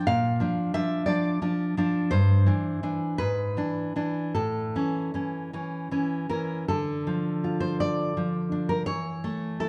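A fingerpicked nylon-string guitar with fresh strings, audible finger squeak and a deep, up-front classical tone carries this intimate, passionate romantic solo in D minor, moving in a rubato 6/8 at roughly 50-61 BPM through a brief passage from a longer piece that reaches a D minor chord at 6.7 seconds, all set in the moderate reverb of a recital hall.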